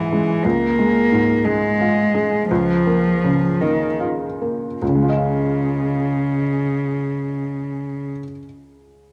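A small room's light reverb and the soft grain of a home cassette recording frame this brief, intimate neoclassical moment for piano and strings, cut from a longer piece. In a rubato 6/8 in Db major, moving at roughly 48-60 BPM counted in dotted quarters, the music feels hopeful and close at hand, and it slows down over its first 4.8 seconds. A felt-muted upright piano carries the accompaniment from Db2 up to F5, its mellow, short-sustained tone sitting up front amid the audible noise of its action. A single cello plays a second line between Db3 and Bb3, bowed sul tasto with vibrato, a soft attack and an airy bow, also close and forward in the sound. The harmony rests on Db, moves to Bbm/Db at 2.5 seconds, and opens onto Dbadd9 at 4.8 seconds as a new section begins, with the cello stopping at 8.1 seconds and the piano continuing alone until 9.1 seconds.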